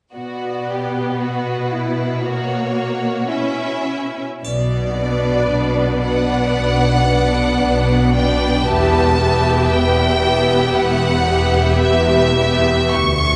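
Uneven, rubato beats stretch a slow 4/4 pulse in this yearning, elegiac romantic movement for symphony orchestra, cut from a longer work. A clear, focused violin section carries the melody up front with vibrato, over a smooth second violin line, lush violas and rich cellos holding the bass. Even-toned double basses join at 4.4 s as the harmony settles toward E minor by 8.7 s, a close, dry triangle adds a bright touch until 6.5 s, and a wet concert hall reverb surrounds the strings.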